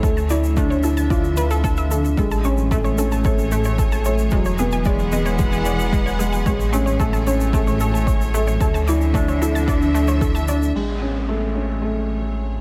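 A small room ambience and light reverb frame this hopeful, tender piano-and-strings electronica, where a soft, felt-muted upright piano sits up front with audible action noise, playing a mellow riff through a low-pass filter and tape echo. Around it, a lush, bowed string section fades in from a distance with biting vibrato. A round analog pluck spins bright, chorused arpeggios with sidechain pumping and tape echo, while a dark, detuned saw bass rumbles and beats with its own pumping. A deep, overdriven electronic kick and a brushed shaker and dark crash cymbal drive the groove. At 10.8 seconds, an electronic downlifter enters and a filter sweep moves over the piano as the passage turns toward a new section.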